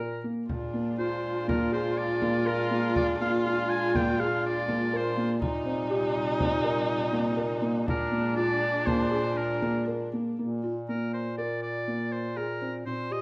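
A clear oboe with light vibrato carries the melody from the start over felt-muted upright piano arpeggios and a punchy, vintage bass clarinet holding Bb, setting a playful, shimmering chamber piece in 5/4 at 122 BPM in Bb mixolydian. At 0.5 seconds a dark, expressive viola joins with a bowed second line full of portamento, while a rich string section plays soft, sul tasto sustained chords in the background and a deep, saturated frame drum played with soft hands adds percussion until 9.9 seconds. The harmony moves between Bb7 and Eb6/Bb before settling on Bb as the oboe, piano and bass clarinet carry on alone in light reverb, in what is cut from a longer piece.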